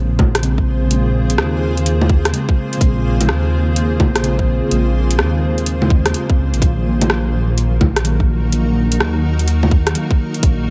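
An overdriven, tight electronic kick sits up front in this nocturnal, wistful future garage excerpt, entering at 0.2 s together with a swung garage kit of bongos, rim clicks and metallic hats with a small-room character. Beneath it, a deep, rumbling detuned saw bass pumps against the kick, while muted, felt-like synth keys add soft, intimate accompaniment through chorus and dub echo. A blurred, evolving granular cloud pad hangs behind everything with its own reverb, and the harmony shifts at 6.6 s under a light overall reverb.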